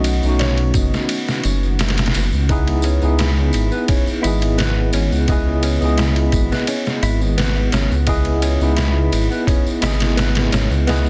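A gritty, pitched-down sampler drum kit with a thumpy kick sits up front beside a deep, rumbling detuned saw bass in this melancholic, hypnotic trip hop excerpt, while a clean tine electric piano with tremolo and tape echo, a faint tambourine and a very quiet string-like drone run throughout, a soft felt-muted upright piano with tape echo carries the melody until 2.1 s, and a mellow electric guitar enters at 2.5 s with arpeggios through harmonic tremolo and delay, set in a dense, dry, heavily limited master.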